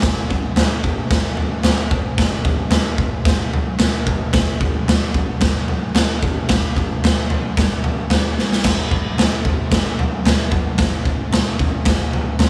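A gritty, saturated garage drum kit sits up front in this raw, rowdy rock excerpt at 112 BPM in a straight 4/4, its punchy kick, medium-tuned snare, toms and crash cymbal filling a bright, pumping stone room with a moderate club reverb and small-room ambience, and a drum fill arriving at 8.4 seconds.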